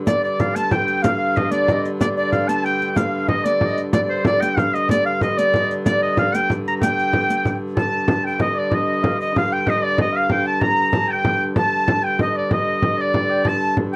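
In a straight 6/8 at 126 BPM that speeds up as it goes, this mysterious, ancient-sounding medieval dance in G minor rests on an earthy, nasal hurdy-gurdy drone. A clear, vintage shawm carries the folk-style melody up front with vibrato and a slapback echo, while an airy alto recorder with crisp chiff and a very quiet, smooth classical oboe play second lines behind it. A small, bright frame drum played with soft hands sits up front, joined by a riq with dark jingles until 7.5 s, in a close, dry 1970s-style studio booth.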